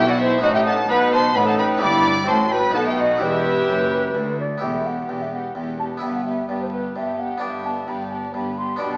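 An airy, wooden baroque flute carries the tune from a distance, joined on the melody by one gut-strung violin section while a second violin section plays another line, as a bright Flemish-style harpsichord, background violas, nasal cellos and a rich double bass section fill out this dramatic, stormy baroque-style concerto movement in 3/4, heard as a fragment of a longer piece through a wet recital-hall reverb with vinyl crackle and an AM-radio sound.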